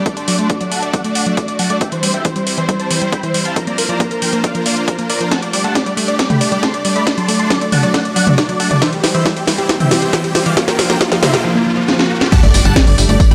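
Heard in a moderate digital room reverb, this uplifting trance excerpt at 137 BPM soars as a huge, euphoric supersaw lead with phaser, low-pass filter and dub echo carries the melody over a lush background supersaw pad and a detuned unison pluck playing arpeggios with tape echo. All three pump with sidechain while filter sweeps drive the build-up through D, C, Bbadd9 and Gsus2. A punchy, tape-tinged electronic kick and an up-front techno kit with cracking snare, metallic hats, crash, tambourine and toms break into a drum fill at 5.3 s, and a very quiet riser and impact enters at 7.6 s. The drop at 12.3 s brings in a bright, catchy plucky unison lead and a tight, driving sequencer bass.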